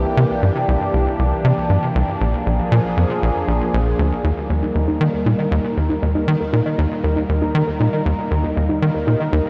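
This luminous, cosmic slice of sequencer-driven space music opens with a swirling, detuned analog pad holding sustained chords, treated with phaser and chorus, over a punchy, up-front sequencer bass riff with a fast filter pluck and analog delay. The tempo sits at 118 BPM in a straight 4/4, starting in Bb lydian as the harmony moves from C7 to Bb7. At 4.2 seconds the music settles into Eb major, and a dusty, wave-folded pluck joins in the background with mellow, lo-fi arpeggios colored by chorus and analog delay. The whole mix is soaked in a huge ambient reverb with a 7.7-second tail and carries the worn, wobbling pitch drift of old cassette tape. The piece is cut from a longer work, with the bass and pluck stopping at 9.4 seconds just before the pad ends.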